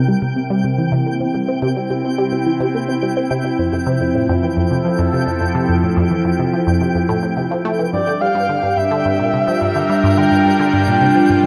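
A wet plate-reverb haze frames this cosmic, mysterious slice of sequencer-driven ambient space music at 107 BPM, where a swirling, phased analog pad holds sustained chords from C7 through Fmaj7 to Gm7 beneath a juicy, squelchy resonant blip pluck riff roughened by cassette tape and delay, a faint twinkling granular texture sparkles high above, and a breathy, flute-like synth lead with tremolo and vibrato enters at 7.9 seconds to carry the melody.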